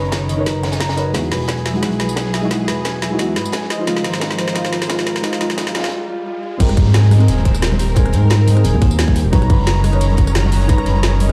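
Swung liquid drum and bass rhythm opens this lush, dreamy snippet, with a tight, layered electronic kick, a garage kit of woody snare, metallic hats, rim click, tambourine and crash, and a gritty, saturated breakbeat kit tucked in the background, all driving a drum fill that runs to 5.9 seconds before a short break. Up front, a smooth gliding synth bass carries vibrato and portamento beneath warbling, vintage chord stabs with chorus and delay, while a clear string section pumps in the background and a fingerpicked concert harp rings out filtered, delayed arpeggios over rich major-ninth chords. A very quiet riser and downlifter sweeps through the middle, and ringing bongos and congas join at the drop at 6.6 seconds, all set in a stone-room reverb as if played through a big sound system.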